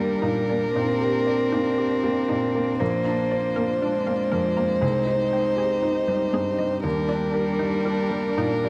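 A dark, woody solo violin carries the melody up front, bowed sul tasto with vibrato, in this hopeful, tender neoclassical piece for piano and strings in Eb major, moving at a rubato 59 BPM in 4/4. Beneath it, a rich cello sings a second line with a soft attack and a pure, floating tone, while a nasal viola with a smooth top sits in the background as accompaniment. A felt-muted upright piano adds mellow, intimate support, its thin felt giving a short sustain and audible action noise. A very quiet chamber string section holds sustained chords with light vibrato, and a round analog pluck, built from detuned sawtooth and square waves with a noise layer, plays bright arpeggios in the background through chorus and tape echo. The harmony moves from Ebmaj7 through Bbadd9 and Abmaj7/C back to Ebmaj7, and the dry, close sound recalls a 1970s studio with little reverb.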